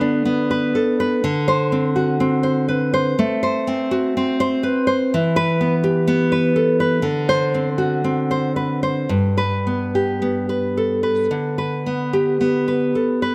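A moderate scoring-stage reverb gives this short passage a roomy glow, with a decay of about 1.9 seconds trailing behind the notes. It is a romantic piece for solo nylon-string guitar in G major, played in 4/4 at a slow 53 to 63 BPM with a free, rubato feel. The fingerpicked guitar sits up front and sounds full-bodied and deeply classical, moving between G2 and C5. The harmony opens on a rootless G, turns to D7 at 1.2 seconds, and passes through E minor and D7 again before settling back on G at 9.1 seconds. The mood is nostalgic yet sunny, and the passage is cut from a longer work, lasting 13.3 seconds.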